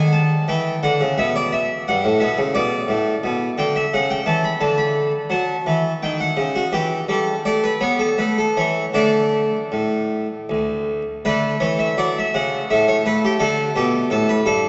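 In a flexible, rubato triple metre, this dance-like, flowing excerpt from a baroque-style suite movement features a solo Flemish-style harpsichord, airy and brilliant with three sets of strings, spanning D2 to B5 and tuned to A4 = 435 Hz, whose harmony takes a colourful turn through Eb7#9 before settling on a bare D5, all heard from further back inside a cathedral reverb that softens the top end and lets each plucked note ring on.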